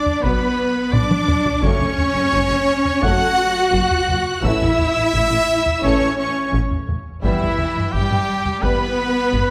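In a straight 4/4 at 86 BPM, this dark, relentless epic orchestral film-score excerpt in E dorian drives forward on a close, dry taiko ensemble struck with heavy sticks, which lands a fill from 0.9 to 1.6 seconds, while a distant, lush violin section carries the melody over a very quiet, focused second violin line, background violas and expressive cellos, a chamber double bass section with a smooth top, bright solo trumpet stabs, and mellow French horns and tight trombones holding sustained chords from 0.2 to 8.9 seconds through Bm, F#m, A and Em/G, all set in a wet concert hall.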